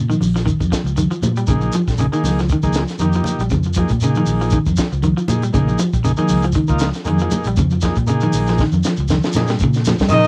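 A twangy, slightly broken-up electric guitar plays arpeggios over a round, dark fingered bass to open this intense, defiant afrobeat excerpt from a home cassette recording, joined at once by thick-skinned congas, a grainy shekere and a dry cocktail kit with a high-tuned snare and punchy kick, with a buzzy vintage combo organ arriving at 1.5 s, a drum fill at 8.6 s, and a breathy trumpet, a bright trombone and a growling baritone saxophone entering at 10.1 s just as the recording cuts off.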